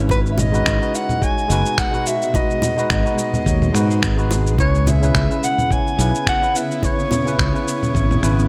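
Wistful and relaxed, this sunset chillout excerpt in C# minor moves at 107 BPM with swung 16ths, as a mellow soprano saxophone sings the jazz-style melody with light vibrato, scooped notes and digital delay over a worn, lightly overdriven tine electric piano with its own delay, an ethereal, chorused ambient pad shimmering in the background, and a bright, growly fingered electric bass up front, while a thumpy electronic kick, gritty sampler-style cabasa, congas and finger snaps, and round, low-tuned bongos set back in the mix drive the groove from G#m7 to C#m7 at 4.6 seconds, all framed by a lush hall reverb and bright 1980s-style digital production.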